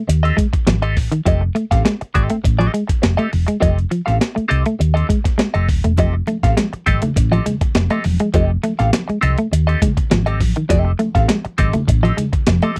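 Funk at 102 BPM in a straight 4/4, this energetic, gritty excerpt sits on an F9 chord in F mixolydian, cut from a longer piece. A compressed, sampler-style breakbeat kit with a thumpy kick, medium-tuned snare and hi-hat drives from the start, its tape-tinged sound re-recorded in a small room and placed up front. Beside it, a round, dark hollow-body short-scale bass, played with the fingers and amped, holds the low end between Eb1 and Eb2. A clean, picked electric guitar with wah comps between C4 and F5, while a semi-hollow electric guitar, fingered and clean with a hollow-body tone, plays a low riff from 0.4 seconds. Very quiet congas with thick skins and hard hands join at 6.0 seconds, heard in a live room. The overall sound is dry and close, like a 1970s studio recording with little reverb.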